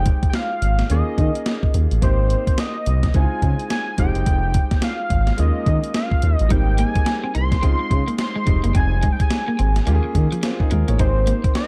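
A smooth, gliding synth bass sits up front in this upbeat, flirty new jack swing excerpt at 107 BPM in Ab major, its detuned sawtooth-and-triangle tone carrying vibrato and portamento between F1 and Eb3. A gated 80s digital drum machine drives the swung 16th-note groove with a thumpy kick, hi-hat and a gated-reverb snare, its sampler-style sound re-recorded in a small room. A thick, bold unison lead with a sub octave carries the melody from C5 to C6, while a clear, vintage concert grand piano supplies accompaniment beneath it. At 6.5 s an electric guitar at the edge of break-up enters with a picked riff dressed in lush chorus. The chords cycle through Fm7, Eb9sus4, Abmaj9 and Dbmaj7, and digital ambience gives the production a dark, warm cast.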